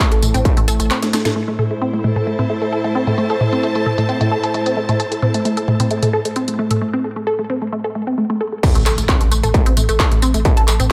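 Hypnotic and driving, this short cut from a longer peak-time techno track runs at 132 BPM in a straight 4/4, sitting on A minor throughout. A squelchy, detuned sawtooth pluck carries the riff up front from start to finish, colored by chorus, phaser, overdrive, delay and sidechain pumping, while a deep, moody pad drones beneath it until 6.8 seconds. A distorted, overdriven electronic kick and a layered techno kit with a cracking snare, hi-hat, handclaps, tambourine, toms and crash push forward with small-room reverb. The kit's hats, toms and cymbals are low-pass filtered and pumped, and a thick triangle sub bass is saturated and filtered. After a drum fill and band accent around 1.2 seconds, a bowed chamber string ensemble with vibrato enters at 1.4 seconds over a filter sweep on the drums, leading to a break at 6.8 seconds. The drop hits at 8.6 seconds, bringing back the kick and sub bass alongside a very quiet electronic impact, all set in a light digital ambience.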